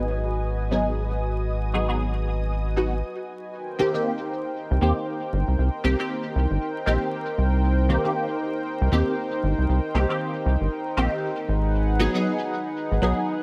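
A rubbery, bouncy square-wave bass sits up front in this deep house excerpt, its dark, hollow tone shaped by a resonant filter pluck and a fast attack. Moving at 117 BPM with a 16th-note swing in C minor, the mood is smooth and deep. A filtered dub chord stab, muted and nasal, decays through phaser, ensemble chorus, cassette tape saturation and tape echo, while a mellow analog pad holds sustained chords above it with a slow attack and chorus. A silky, string-like pad glimmers high above with vibrato until it drops out at 3.0 seconds, leading into a short break before the drop lands at 3.5 seconds on Cm7. The harmony moves back to Abm7 at 11.5 seconds, and vinyl crackle and light reverb round out the mix.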